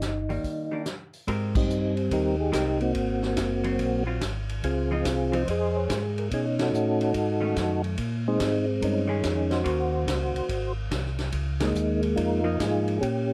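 A percussive, up-front tonewheel organ carries the melody through slow rotary speaker and chorus vibrato over a round, key-clicking organ bass line in this swinging, soulful soul jazz organ trio at 143 BPM in Ab major, where a dark, compressed hollow-body guitar accompanies with a picked tone and a distant, roomy drum kit with dark cymbals and a boomy kick drives the swing, with a band break from 0.4 to 1.3 seconds and accents at 1.5, 6.5 and 11.5 seconds across rich ninth chords in a dry sound.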